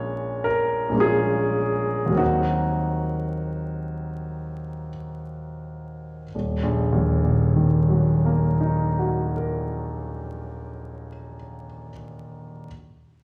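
Rubato 3/4 at 40-56 BPM, slowing through the first 6.3 seconds, shapes this nocturnal, mysterious fragment of impressionist classical solo piano in Eb minor, where a clear, intimate grand piano sits up front with audible action noise across a span from Eb1 to Db5, moving from Bbm7 and Ebm6 to Ebm at 6.3 seconds inside a wet recital-hall reverb dusted with vinyl crackle.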